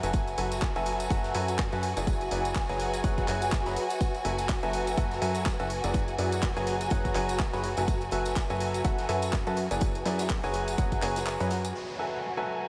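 A bright, brilliant grand piano with audible action noise sits up front playing a riff through a soulful, energetic piano house excerpt at 124 BPM in F# minor, swung on the sixteenths, with sidechain pumping, low-pass filtering and analog delay on its line as it cycles F#m11, E7/F# and C#7sus4/F#. Beneath it, a punchy electronic kick drives alongside a plucky, funky analog bass, a house kit of handclaps and hi-hats, a faint acoustic rock kit with hi-hat and snare, and a close, dry tambourine in the background, while lush bowed strings with vibrato and a very quiet warbling, nostalgic tape-like pad hold sustained chords. The dreamy mix is soaked in huge ambient reverb, and the kick drops out at 11.3 seconds before an electronic downlifter enters from 11.8 to 12.7 seconds.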